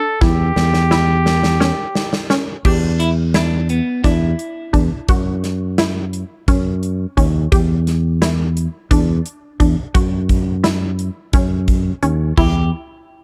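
A gated, roomy 80s drum kit with bright cymbals and a tight kick drives this intricate, tense progressive instrumental excerpt in 7/8 at 173 BPM (eighths) in E dorian, opening with a drum fill beneath a vintage, classical-style trumpet melody that ends at 2.3 s, while a squelchy, detuned synth pluck spins chorused arpeggios, a growly fingered electric bass sits up front, and a twangy clean electric guitar adds a picked second line from 2.7 s, all in a dark, dry production.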